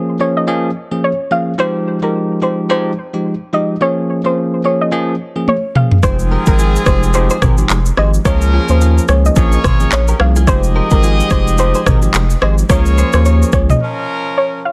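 A thick, saturated sub bass with a fast attack sits up front in this hypnotic, mellow afrobeats excerpt, arriving at 6.0 seconds alongside a clear horn section and a bright electric guitar riff, recorded direct, that stays in the background with analog chorus and tape echo. Before that, a bell-like, barky tine electric piano lays down the accompaniment over chords moving between Db6, Fm9 and Bbm7, while a soft, round pluck with a dark, decaying filter tone carries the melody through chorus and tape echo. The electronic afro-pop drum kit enters with a fill at 5.5 seconds, its deep kick up front among handclaps, rim clicks, shaker and toms, with soft clipping on the snare. The horns add a smooth-topped second line with light vibrato, and the groove has a swung sixteenth-note feel. The dense, heavily limited mix is dry, and the piece closes on a break at 13.8 seconds, where the pluck and horns sound on briefly.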